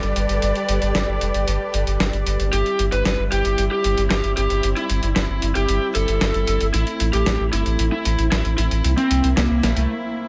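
A straight 4/4 pulse at 114 BPM drives this nostalgic, bittersweet italo disco excerpt, where a gritty, compressed sampler-style drum kit of hi-hat and snare and a round, deep analog bass sit beneath soft, intimate string-section chords bowed with vibrato, while a dark, overdriven lead guitar with delay carries the melody from 2.5 s over chords moving from Gadd9 through C/G and Am to C7, in a lightly reverberant space before a brief break at 9.9 s.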